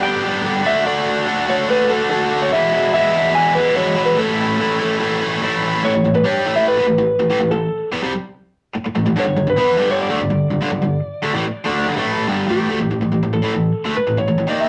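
A straight, driving 4/4 rock groove carries this swaggering fragment of a longer piece, where a bright, overdriven, double-tracked stack guitar riff sits up front under a dark, slightly broken-up slide guitar melody played with fingerpicks and compressed, both heard throughout a rough rehearsal-room recording with a small room's moderate reverb and lossy compression artefacts, as the harmony moves through G, D, E and A before settling on power chords from 5.8 s.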